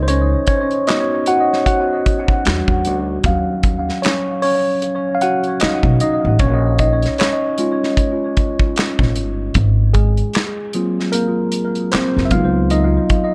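R&B and neo-soul at 76 BPM in Eb minor with a gentle sixteenth-note swing, this sultry, late-night excerpt features a worn, slightly out-of-tune tine electric piano soloing through phaser and tape echo over jazzy ninth and thirteenth chords, backed by a woody, growly pizzicato upright bass and an up-front soul drum kit of tight kick, medium-tuned snare, hi-hat and handclaps, all set in an echo-heavy mix with light studio reverb.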